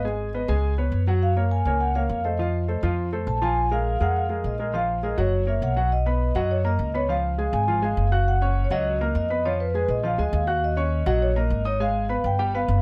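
A brisk, straight 4/4 at 204 BPM drives this sophisticated, sultry Afro-Cuban jazz excerpt in Bb minor, with a woody, pizzicato upright bass sitting up front beneath an intimate concert grand piano whose deep bass and audible action noise color its accompaniment. Over them, a vibraphone played with soft mallets carries the melody in a mellow, vintage, band-limited tone, its metallic ring shimmering with slow motor vibrato. All three play throughout under light reverb, moving into a new section at 5.9 seconds where the harmony shifts through Bmaj9, Fdim and Bb7 before settling back on Abm.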